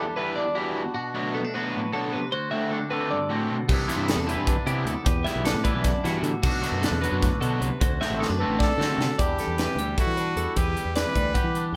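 Three electric guitars open this wistful, playful fragment of math rock and midwest emo in a lopsided seven-count metre: a bright, twangy guitar picks accompaniment through a phaser, a clean twelve-string spins bright arpeggios high up with spring reverb, and a raw, double-tracked garage guitar sits up front with an overdriven riff. At 3.7 seconds a growly fingered bass and a crisp fusion kit arrive together, the drums airy and polished, with a high-tuned snare, punchy kick, hi-hat and crash cymbal. The chords circle through Em7, Bm7, D7 and Cmaj9, and a drum fill leads into the turn. At 8.6 seconds a brilliant, close-miked trumpet steps forward with a short pop-style solo line. The garage guitar drops out as the harmony settles on Em9 at 9.2 seconds, and the band plays on together in one lightly reverberant room until the cut.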